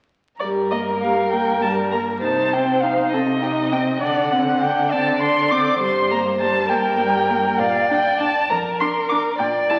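Crackling through the surface noise of a very old 78 rpm record and the reverberant bloom of a concert hall, this urgent, restless fragment of a quick classical-period string quartet movement in 6/8 sets a dark-toned first violin up front singing the melody with vibrato and portamento, a rich second violin tracing a lower line beside it, an intimate, airy-bowed viola close by in the accompaniment, and an expressive cello sitting lower in the mix on the bass.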